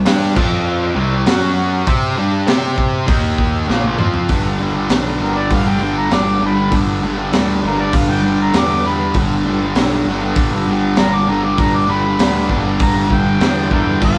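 Raw and swaggering, this garage rock excerpt at 99 BPM in a straight 4/4 pairs a growly, overdriven fuzz bass and an up-front, double-tracked fuzz guitar riff over a crunchy breakbeat kit with a high-tuned snare, tight kick and rolled-off top, all played live in one room with moderate reverb, until a drum fill at 3.7 seconds hands off to a gritty, amplified harmonica solo with tongue slaps from 5.2 seconds over chords moving from F5 and C5 through Bbsus2 to G5.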